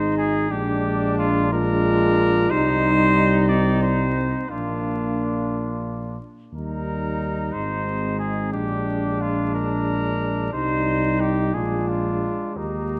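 Close, detailed microphones and a vinyl crackle sit within a moderate concert-hall reverb in this noble classical brass quintet fragment, moving in a steady 6/8 at 60 BPM by the dotted quarter and tuned to A4 = 438 Hz. Up front, a warm, vintage-toned trumpet carries the melody while a distant, roomy second trumpet with light vibrato supplies a second line beneath it. A mellow French horn and a dark trombone, both with light vibrato and a smooth top, fill in the harmony over chords built around Ab, Bb7 and C minor, anchored by a prominent, shadowy tuba bass.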